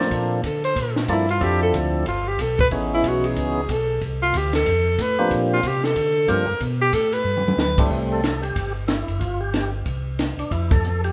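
This short cut from a longer soul jazz organ trio performance opens with a percussive tonewheel organ carrying the melody alongside a mellow tonewheel organ on bass and a compact cocktail drum kit, swinging at 185 BPM in a bluesy, greasy mood. At 0.5 seconds a breathy, close-miked tenor saxophone takes a solo, its subtone and vibrato sitting up front in a clear jazz voice until 7.8 seconds. The melody organ has key click and second harmonic percussion through a slow rotary speaker, while the bass organ is round and lightly overdriven with chorus vibrato and its own slow rotary. The kit sounds dark and acoustic, with a high-tuned snare, punchy kick, ride, hi-hat, crash and toms, and a drum fill at 7.3 seconds leads into a passage settling in C major. The band plays live in one room under a moderate large studio reverb, closing on a band accent at 10.7 seconds.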